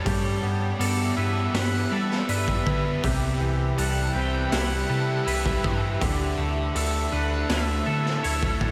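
A dreamy mix soaked in a huge ambient reverb opens this wistful, hazy shoegaze and dream pop excerpt at 81 BPM, where a raw, gritty garage drum kit with a boomy kick and a mellow tine electric piano carrying the bass enter at 0.1 seconds beneath a dark, thick fuzz guitar riff. In the background, a twangy guitar fingers chorused, delayed arpeggios while a second clean, compressed twangy guitar plays a riff through reverse reverb, and an evolving, detuned wavetable pad holds sustained chords over G6, Cmaj7 and Dsus2. From 0.8 seconds, an octave-fuzz lead guitar sings a delayed melody on top.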